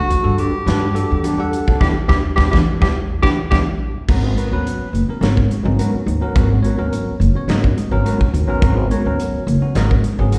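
A tenor saxophone and a bell-like, barky electric piano open this nocturnal, slick electric jazz fusion excerpt. The saxophone carries the melody with vibrato, scooped notes and a smooth top, through slapback echo and plate reverb, before falling silent at 3.6 s. The upright bass is woody and up front, with pizzicato steel strings, and the acoustic drum kit is punchy and roomy, with bright cymbals and a medium-tuned snare. A dark, clean, fingered electric guitar adds stabs in the background through analog chorus. A drum fill and a band accent run from 1.8 s to 4.1 s, and the harmony moves from Em11 to G#m11 at 4.1 s, with the piano, guitar, bass and drums carrying the rest. The whole band sounds like a live gig heard through the venue's PA, set in the reverb of a recital hall.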